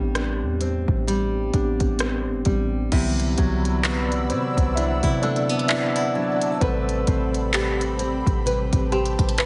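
A slow 65 BPM groove in 4/4 with a lazy 16th-note swing sets a romantic, tender mood in this contemporary R&B excerpt. A smooth, up-front drum kit with a soft kick, silky hi-hats, rim clicks, handclaps and crash cymbal carries a tape-warmed, roomy sheen. Beneath it, a clean 808-style bass hums deep and boomy with a quick, decaying sine tone. A mellow tine electric piano and a fingerpicked nylon-string guitar, its arpeggios trailed by tape echo, move through Am11 and Cmaj9#11 to Am9. The electric piano takes a solo from 2.9 seconds. An ethereal, airy pad with chorus and reverb enters at 3.4 seconds, and a very quiet, twangy banjo adds bright texture from 3.8 seconds, all in a dry mix.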